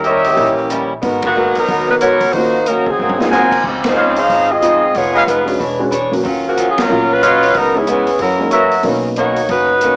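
Swinging and brassy, this big band swing excerpt in Eb minor moves at 184 BPM, with a mellow, up-front saxophone section carrying the melody while a clear trumpet section with light vibrato stabs at the start and again from 3.3 to 8.8 seconds, over a boxy picked acoustic guitar, a dark baby grand piano with audible action noise, a woody, thumpy upright bass, and a roomy, distant drum kit that fills at 3.0 seconds ahead of the band accent at 3.8 seconds, all heard through the small-speaker sound of a home cassette recording.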